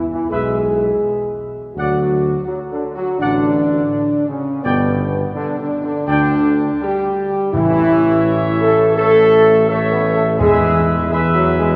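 In a straight 4/4 at 83 BPM, this majestic, triumphant classical brass passage in A major is cut from a longer piece. A French horn section sits up front with dark sustained chords and light vibrato, while a clear trombone section fills in sustained harmony beneath it. A distant, roomy trumpet section carries the melody from 0.3 seconds, supported by a solo tuba whose smooth-topped bass has a gentle vibrato. Very quiet timpani played with soft mallets add a round tone from 7.5 seconds. The harmony moves from E through D and G to A before returning to E, and the whole ensemble is heard from further back in a church, its wet reverb lending the brass a broad, ceremonial glow.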